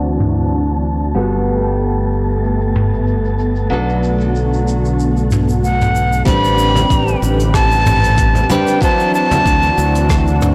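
This relaxed, wistful sunset chillout fragment opens on a fingerpicked nylon-string guitar with a deep classical tone and a touch of delay, resting on a lush, warbling sawtooth pad whose detuned unison chords carry chorus. Beneath them, a bright, punchy fingered electric bass sits up front with tube saturation, while an airy, wind-like tuned noise layer drifts in the background under a filter sweep. A soft brush kit of hi-hat, rim click, shaker and toms moves at 94 BPM in 4/4 with a light swing, over chords in A dorian that drift from D9 through Gmaj9 and Bm7. At 5.6 seconds a breathy, straight-toned concert flute takes the melody up front, tongued and slightly unsteady, with digital delay trailing it. At 6.3 seconds the wind texture drops away, and a gritty, thumpy electronic kick with overdrive joins as the harmony moves to Am11 and back to D9. Ringing congas played with hard hands enter in the background at 6.8 seconds, all set in a moderate concert-hall reverb within a blown-out, overdriven and low-pass-filtered mix.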